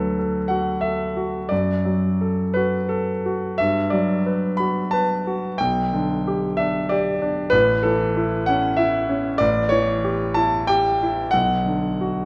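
In a flexible, rubato triple metre, this lyrical and passionate romantic character piece for solo concert grand piano spans from deep bass up to a clear, smooth treble over about 12.3 seconds, its up-front, vintage-toned voice set in a wet recital hall as the harmony moves from D through Gmaj7 and A7 to reach Bm where the longer piece is cut.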